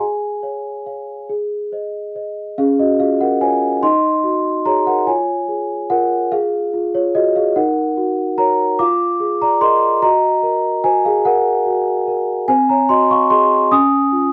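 A large solo celesta, bell-like and mellow with soft felt hammers and an up-front, boxy ringing tone, sings a tender, dreamy classical lullaby in a straight 6/8, opening with a brief phrase before a new section arrives at 2.6 s and drifts through gentle chord changes to settle home at 13.7 s, all captured in a dry, close 1970s-style studio sound in this passage cut from a longer piece.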